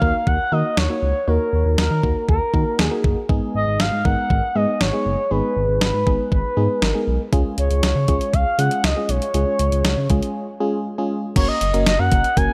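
A straight 4/4 pulse at 119 BPM comes from a clean 12-bit digital drum machine with a thumpy kick, medium-tuned snare, hi-hat and crash cymbal, its sampler-style sound re-recorded in a small room and placed up front. This cut from a longer synth-pop piece has a melancholic, nocturnal mood, moving through Ebm, Abm and Db before a break at 10.4 seconds and a shift to Gb at 11.4 seconds. A smooth, dark synth bass blends sawtooth and square waves with a touch of ring modulation, sustaining its notes under the groove. An FM electric piano supplies the accompaniment with a mellow, warbling vintage tone, a noise layer, decaying notes and tremolo. Over it, an expressive synth lead of sawtooth and triangle waves sings the melody up front, its soft attack shaded by vibrato, chorus and tape echo. Light reverb and a digital ambience frame the recording until it ends at 12.5 seconds.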